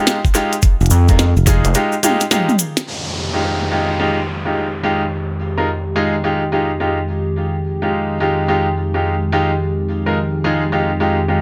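Lightly reverberant and swaggering, this glitch hop excerpt opens with bright baby grand piano stabs roughened by 12-bit sampler grit, sidechain pumping and digital delay, over a knocking electronic kick, clicky glitchy drums with a tiny snare and toms, grainy cabasa, a growly fingered electric bass and an aggressive overdriven synth bass, before a break and drum fill give way at 2.9 s to a smooth, warbling analog pad with subtle chorus and pumping alongside an electronic downlifter.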